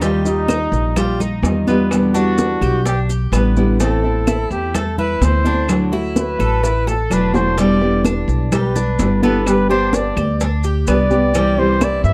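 Sunny and relaxed, this short cut of Cuban son and guajira features a mellow trumpet solo up front from 0.3 s, its vibrato and smooth top bathed in plate reverb. Beneath it, a full-bodied nylon-string guitar is fingerpicked with a deep classical tone and audible finger squeak, a Cuban tres picks metallic double-string arpeggios, and a woody, thumpy pizzicato upright bass sits forward in the mix. In the background, ringing high-tuned congas, tight vintage bongos and dry claves from 0.5 s fill out the groove alongside close, grainy maracas, with a drum fill at 6.6 s, all within a dark, warm production and a small room.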